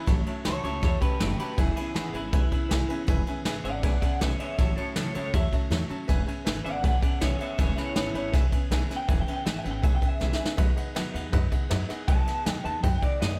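Rollicking and rowdy, this rockabilly cut, lifted from a longer piece, is led by a twangy, slightly broken-up electric guitar through a small old amp, soloing cleanly throughout with analog chorus and delay. Beneath it, a bright, full-bodied picked dreadnought acoustic guitar and a brilliant, polished upright piano tucked in the background fill out the accompaniment, while a woody, thumpy pizzicato upright bass on gut strings anchors the low end. An up-front brush kit with dark cymbals and a boomy kick drives the straight feel in a small room, adding a drum fill at 10.2 seconds.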